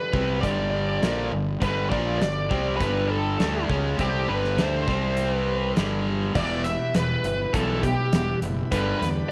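A straight, driving 4/4 groove from a big rock drum kit, with a fat snare and punchy kick in a big room, carries this sunny classic rock excerpt, joined by a growly, fuzzed fingered bass and two overdriven rhythm guitars playing riffs, one bright and one crunchy in the background. Up front, a smooth overdriven lead guitar with wah sings the melody over a very quiet, full-bodied dreadnought acoustic playing a picked accompaniment, as the chords move from G through C5 and back. At 6.4 seconds the harmony turns to E minor and a very quiet, shouting tonewheel organ with key click and slow rotary speaker adds sustained chords, all set in light studio reverb.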